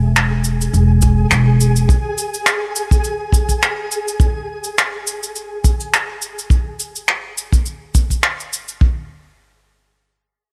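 A punchy, rolled-off kick drum sits up front from 1.0 s in this hopeful, delicate folktronica excerpt, moving at 104 BPM in 4/4 with a light sixteenth-note swing in E major. Before it, a woody pizzicato upright bass on steel strings sounds a low E and drops out at 1.8 s. Cabasa and finger snaps, dark and smooth with a brushed character, stay close alongside the kick. Behind them, a faint, flickering granular texture with a slow attack, detuned triangle tone and long release hovers in its own reverb until 6.5 s. The studio reverb gives the acoustic percussion a studio-room feel, and a faint mains hum sits beneath the sound.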